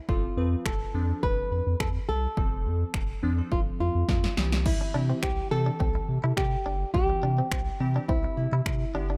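A punchy analog drum machine drives a straight 4/4 dance-pop groove at 105 BPM, its tape-warm kick, snare, finger snaps and crash sitting up front, with a drum fill at 4.1 s, while a round, deep analog bass and glassy digital keys with chorus both pump against the sidechain over a move from F to C in C major. A thumb-plucked nylon-string guitar carries the carefree melody through digital delay, finger squeaks audible, and at 4.8 s a bright, twangy clean electric guitar recorded direct adds a riff bathed in lush chorus. The sound is dry, and this upbeat excerpt is cut from a longer piece.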